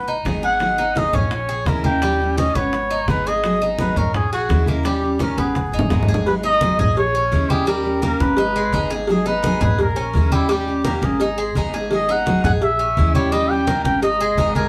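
A cup-muted trumpet sits up front as the solo voice, its veiled, breathy tone carrying a jazz-style melody with gentle vibrato and a soft, whispered attack that feels intimate. This sultry Cuban son and guajira cut moves at 170 BPM in 4/4 with a straight feel, cycling through a G# minor progression of G#m, G#m7, A#m7b5 and D#7. Beneath it, a Cuban tres picks metallic, double-strung arpeggios while a full-bodied dreadnought steel-string guitar adds picked accompaniment. A woody, thumpy upright bass with gut strings anchors the low end, and low-tuned congas played with hard hands give the groove a thick-skinned weight, with round bongos and cowbell tucked in the background. A drum fill at 5.6 seconds leads into the second section at 6.3 seconds, and the band, playing live in one room, is wrapped in a wet studio reverb.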